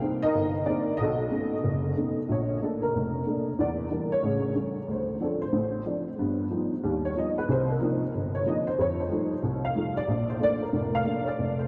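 A lone upright piano opens this swinging jazz fragment, its dark, woody tone sitting up front and spanning from deep bass notes up into the middle-high register. The piece moves at a brisk 185 BPM in 4/4 with a light swing on the eighth notes, in Bb major and tuned slightly flat of standard pitch. An ensemble chorus and a diffuse ambient delay give the slightly detuned, worn instrument a vintage, dreamy shimmer. At 2.3 s the piano settles onto Bbmaj7 and begins its solo, moving through a sophisticated progression that includes Em7b5, A7, Gaug7, Cm11 and F9 before coming home to Bbmaj7. The whole performance is soaked in a cathedral-sized reverb with a long tail, so the mellow, smooth piano seems to float in a vast space. It plays alone until the cut at 11.7 s.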